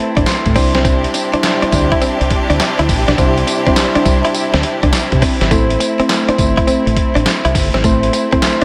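A gritty, compressed sampler-style drum kit sits up front with a thumpy kick, medium-tuned snare, handclaps, hi-hat and tambourine treated with gated reverb, driving this slick, bouncy, swung new jack swing excerpt. A dark, round fingered electric bass underpins it, while soft, warbling electric-piano-like synth keys with chorus open with a brief fill before settling into accompaniment. Bright, bowed studio strings hold lush vibrato chords, and a clean, direct-recorded electric guitar riff with lush chorus sits in the background, all under light reverb as the harmony moves from Cadd9 to Am at 5.5 seconds.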